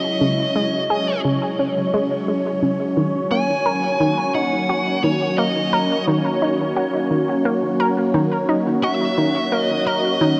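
Awash in a huge, wet ambient reverb with a long 8.1 s tail, the recording has the worn, warbling character of old cassette tape, its pitch drifting throughout. This is a mysterious, expansive slice of sequencer-driven space music, moving at 87 BPM in a straight 4/4 and tuned slightly high to A4 = 441 Hz. Up front, a phased analog pad holds sustained chords, its detuned sawtooth tone swirling and evolving through a moving notch, with a slow attack, long release and added chorus. Beneath it, an analog pluck repeats a riff in a round, nasal voice with a fast attack and short decay, colored by chorus and tape echo. A dark, compressed fuzz lead guitar carries a picked melody between C#5 and G#5, sitting lower in the mix and trailing distortion and tape echo. The harmony moves from C#madd9 to D#m7 at 3.0 s in this short excerpt taken from a longer piece.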